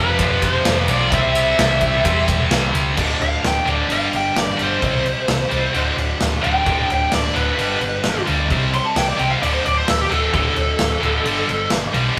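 A biting, overdriven lead guitar opens over a pair of bright, high-gain distorted rhythm guitars, one heavy and one set further back, with a dark, round hollow-body bass picked beneath them, before a big acoustic drum kit with a punchy kick and bright cymbals lands up front at 0.2 seconds. This is a heavy, aggressive hard rock excerpt in D dorian at 130 BPM in a straight 4/4, moving through chords on F, C, D and G. At 3.0 seconds the picked lead breaks into a solo high above the riffing, all heard in a rough rehearsal-room recording with moderate studio reverb.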